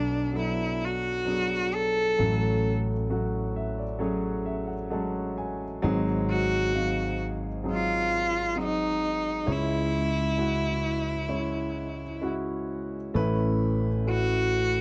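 A clear, smooth bowed cello with vibrato carries the melody up front through this heartbroken, reflective acoustic folk-pop ballad excerpt in F# minor at 66 BPM, over a dark, mellow grand piano with boxy tone, long sustain and audible action noise, and a growly, round fretless electric bass, all captured close and dry as the harmony moves from Bm7 to C#m before opening onto Aadd9 at 13.2 seconds.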